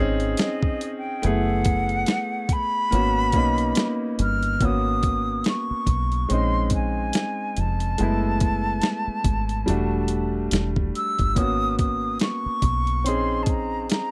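R&B and neo-soul at a slow, swung 71 BPM with a late-night, soulful mood, where an airy, expressive concert flute with vibrato takes a solo through the first 4.6 seconds and carries the melody over minor-eleventh piano chords from a natural-sounding grand, a round, dark, foam-muted fingered electric bass, and a gritty, overdriven sampler-style drum kit with a thumpy kick, all captured in a dry, close 1970s-style studio sound.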